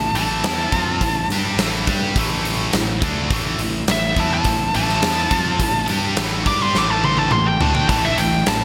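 Bright, 1980s-style digital production with a lush hall reverb frames this driving, menacing hard rock excerpt in A minor at 104 BPM, where a dark, nasal lead guitar with a parked wah solos from E5 to D6 over a double-tracked, high-gain riff guitar, a growly fuzz bass and a huge arena drum kit with a punchy kick that enters at 0.2 seconds and plays a fill from 6.8 to 7.9 seconds.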